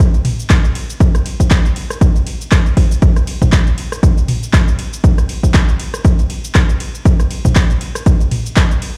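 A swung sixteenth-note groove at 119 BPM in 4/4 drives this short house cut, lifted from a longer piece and running about 9 seconds. A punchy analog kick drum sits up front from 0.0 to 8.7 seconds, carrying the pulse with a firm electronic thump. Behind it, a booming analog drum machine fills out the kit with handclaps, rim clicks, shaker, toms, ride cymbal and metallic hi-hats, its tape-warm tone colouring those layers until 8.9 seconds. The mood is trippy and hypnotic. The sound is mostly dry, yet it feels as though it is played through a big sound system in a bare stone room.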